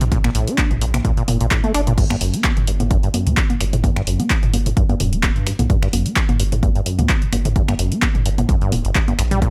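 Acid house with a raw, trippy mood, cut from a longer piece and moving at a lightly swung 4/4 pulse. A deep acid bass riff runs throughout, rubbery and resonant with a sawtooth bite, each filter pluck striking fast and decaying darkly through overdrive and analog delay. Beneath it sits a round analog bass, triangle and sine in tone, sustained and pumping against the sidechain. A punchy analog drum machine stands up front with congas, crash cymbal, finger snaps, handclaps, hi-hat and toms, all roughened by overdrive, while an overdriven electronic kick drum joins at 0.1 seconds as the loudest part. The harmony moves from Bbmaj7 to Gmaj7 at 2.0 seconds, and the dry room keeps every element close and immediate.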